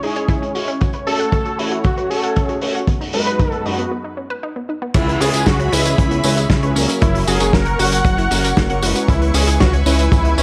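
A dark, warm production carries this bittersweet, nostalgic italo disco excerpt in C# minor at 116 BPM, where a nasal, warbling unison lead with delay sings over a lush phaser-washed pad, a round chorused pluck arpeggio, bold brassy synth stabs, a lo-fi small-room kit with dark cymbals and an up-front tight kick, until a glossy chorused synth bass joins at 4.9 seconds after a short break, moving through C#m, F#m and B6/F# into C#m7 and F#.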